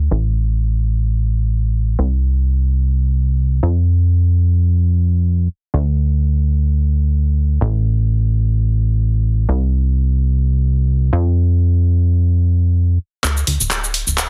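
A dense, heavily limited modern master with little reverb carries this soulful, energetic piano house excerpt, where a punchy, funky analog bass of sawtooth and square waves plays up front alone with fast-attack, decaying filter plucks until 13.2 s, when a layered, tape-warm electronic house drum kit, re-recorded in a large room, arrives with cabasa, handclaps, hi-hat and a softly clipped snare for a closing build-up, drum fill and filter sweep.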